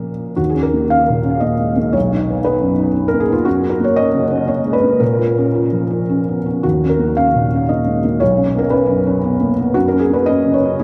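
In a rubato 3/4 lilt at around 107 to 121 BPM, this short excerpt of neoclassical minimalist piano in Eb minor drifts through a reflective, melancholic cycle of chords, from Eb5 through Badd9, Gbadd9 and Bbm before returning to Eb5 and moving by way of Bsus2 to Gbadd9. A felt-muted upright piano plays solo, ranging from B1 to F5, its soft, mellow tone sitting intimately up front with thick felt and audible action noise, lightly colored by subtle chorus and analog delay. A cathedral reverb with a 4.2 s decay soaks the mix in a dreamy haze, and the passage is cut from a longer piece, ending at 10.8 s.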